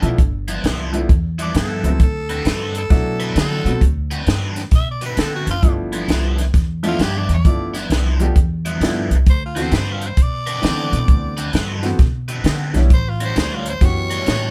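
A swung shuffle at 132 BPM in 4/4 drives this soulful, laid-back electric blues in D mixolydian, tuned slightly low to A4 = 438 Hz. A compact cocktail drum kit sits up front with a punchy kick, a dry, high-tuned snare and hi-hat, while a woody, thumpy upright bass, plucked pizzicato on steel strings, also sits forward in the mix. An overdriven semi-hollow guitar plays a picked riff coloured by a phaser, and an upright piano accompanies with a brilliant, intimate tone, its action noise audible and its notes sustaining long. From 1.4 s a growling tenor saxophone takes the solo melody, raspy and breathy with vibrato and a jazz feel. The harmony moves through G13, D13 and A13 chords, and the band sounds as if playing live together in one room with moderate reverb, in a passage cut from a longer piece.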